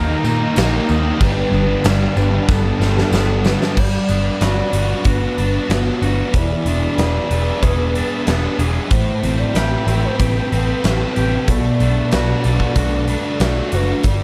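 A straight 4/4 pulse drives this blissful, dreamy shoegaze and dream pop excerpt, where a brief jingly tambourine and a very quiet, double-tracked crunchy guitar riff appear early before the crunchy part drops out at 3.8 s, a big rock drum kit with a fat snare and punchy kick enters at 0.6 s, and an up-front, round, foam-muted bass, a dark fuzz guitar riff with ensemble chorus, an overdriven guitar riff with reverse reverb and a twangy, clean guitar arpeggio in the background support a pure, breathy sine lead melody with phaser, vibrato and slapback echo over a lush, warbling unison pad, all within a small room ambience.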